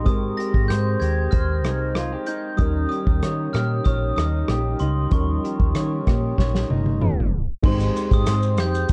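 An up-front unplugged drum kit with dark cymbals and 12-bit sampler grit drives this nostalgic, laid-back indie and bedroom-pop excerpt alongside a round, foam-muted electric bass, a slightly broken-up guitar through a small old amp, detuned warbling synth keys and a bell-like glockenspiel melody played with soft plastic mallets, all on worn old tape, while a drum fill from 6.4 seconds runs into a tape stop at 7.0 seconds and a distant group handclap sounds briefly at 8.3 seconds.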